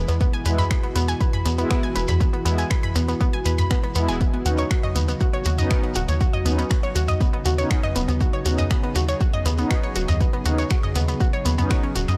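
An evolving, detuned wavetable pad with chorus and its own reverb opens this driving, dramatic melodic techno excerpt at 120 BPM alongside lush, detuned unison pluck arpeggios with tape echo and an up-front, punchy sawtooth sequencer bass, all pumping to the sidechain, before an overdriven techno kit of finger snaps, hi-hat and toms and a grainy, mellow shekere arrive at 0.1 seconds, a deep, overdriven electronic kick follows, and a brassy analog pad adds bold, chorused stabs with tape echo from 0.5 seconds over a move from E to Badd9/D#, all captured in a dry, gritty hardware sound.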